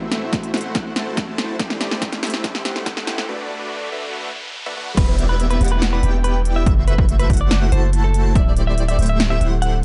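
An emotional, lush future bass excerpt opens on a huge, thick supersaw riff pumping against punchy, overdriven big-room drums and a background riser through a filtered build-up and brief break, then drops at 5.0 seconds into a deep, sustained 808 bass, a clean picked electric guitar melody with dub echo, and an airy, dreamy arpeggiated lead with chorus and tape colour, all in a dark, half-time production.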